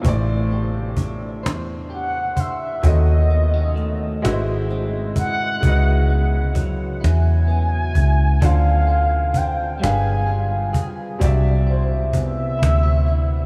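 A dreamy mix soaked in cathedral reverb frames this intimate, tender slow six-eight R&B passage at 43 BPM, cut from a longer piece, where a dark, foam-muted vintage fingered electric bass sits up front and punchy beneath snappy cajon played with soft hands. A clear baby grand piano with short sustain fills out the harmony while a slightly broken-up, compressed electric guitar with subtle chorus adds a second line, the chords moving from Am7 through C#m11 to a closing Cmaj9#11. At 1.9 seconds a mellow, horn-like sawtooth synth lead enters with a soft attack and vibrato, carrying the melody through chorus, phaser and tape echo until the end at 13.5 seconds.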